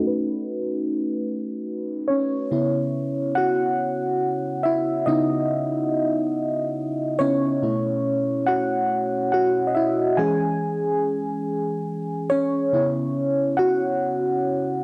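This home cassette recording has a low-pass filtered sound, with a moderate spring reverb giving it a two-second tail. The short R&B fragment, cut from a longer piece, sways in 6/8 with a straight feel and carries a yearning, sultry mood. A mellow FM electric piano plays alone, sitting up front with a dark, soft, round, full-bodied tone, a fast attack that decays, a noise layer and chorus. The opening 2.5 seconds pass under a filter sweep over a B9 chord, and then the piano takes its solo until the close at 14.8 seconds. The harmony moves through C#m9, B9sus4 and E6 before coming to rest on C#m7.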